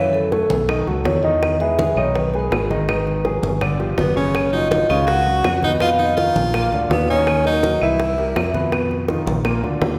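Sophisticated and fiery, this brief Afro-Cuban jazz excerpt at 164 BPM sets a mellow, ringing soft-mallet vibraphone melody over woody upright piano chords, a growly fingered electric bass, tight high-tuned bongos, low-tuned congas and vintage claves in the background, with an edgy, punchy tenor saxophone adding a second line with vibrato from 4.0 seconds, all bathed in the long reverb of a concert hall.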